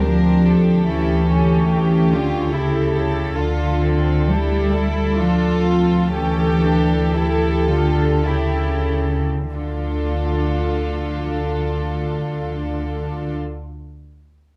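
An intimate cello section with light vibrato carries the bass line in this solemn, melancholic slow movement for string orchestra in 3/4, set over a dark, woody double bass section that holds a low D up front. Above them, violins in two parts, one carrying the melody and one a second line, blend with the viola accompaniment in a floating, distant sul tasto texture with soft attacks. The rubato phrasing slows between 2.1 and 9.5 seconds before a new section begins at 9.5 seconds, heard through close, detailed microphones and light reverb in a fragment cut from a longer piece.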